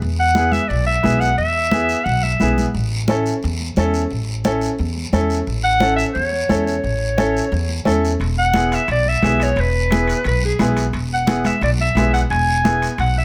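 Joyful and festive, this cumbia excerpt from a longer piece moves at 176 BPM in A major, with an up-front pizzicato upright bass on steel strings, thick-skinned congas in the background and a raspy guiro, and a natural, woody upright piano under a clear jazz-style solo clarinet whose vibrato, scooped notes and slapback echo stand out before it pauses from 2.6 to 5.6 seconds, while vintage, band-limited timbales with a ringing metal shell join at 8.2 seconds in a lightly reverberant space.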